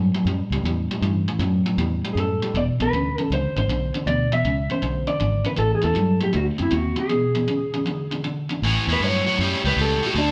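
A swinging 4/4 shuffle at 158 BPM drives this laid-back, swaggering electric blues in A mixolydian, cut from a longer piece. A biting, overdriven guitar sits up front with a picked riff over a round, dark, fingered electric bass, and a clean lap steel guitar enters at 2.1 s with a slide melody, moving through A7, E7 and D7 changes. After a break at 7.1 s, a slide solo takes over at 8.6 s, all captured as a band playing live in one large studio room with moderate reverb.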